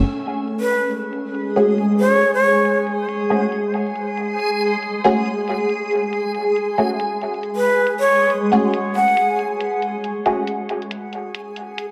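Half-time swung 16ths at 138 BPM carry this dark, brooding deep dubstep excerpt, where a layered, tape-warm electronic drum part with low-pass-filtered hats and snare sits quietly beneath a reversed, granular, dreamy swelling texture that runs throughout, while a breathy bamboo shakuhachi with vibrato, chiff and dub echo appears up front at 0.6 and again at 7.6 seconds, and a muted, detuned sawtooth chord stab with phaser, ensemble chorus and dub echo sounds from 1.6 seconds, the whole set inside a lush hall reverb.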